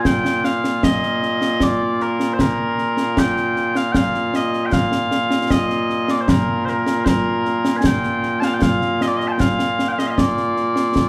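Recorded live in one room with a moderate large-studio reverb, this short cut from a longer piece of Scottish pipe music opens in a proud, ceremonial mood at 77 BPM in a straight 3/4 in Bb major. Mellow small bagpipes carry the melody up front from 0.0 seconds, a sweet, continuous solo line ranging from Bb2 to A5. Concert snare and bass drums join at 0.1 seconds with a close, dry acoustic sound and bright cymbals, both parts playing through to 11.1 seconds.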